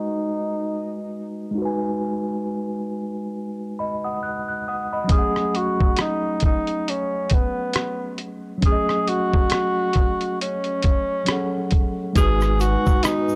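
Lo-fi hip hop at 68 BPM in G# phrygian, melancholic and reflective, with a breathy, subtoned tenor saxophone carrying the melody over mellow tine electric piano from the start, a gritty, thumpy sampler-style drum kit entering at 5.1 seconds, and a deep, round dub sub bass, a very quiet dark analog pad and a grainy tube shaker arriving at 12.2 seconds, all in a dry, gritty recording cut from a longer piece.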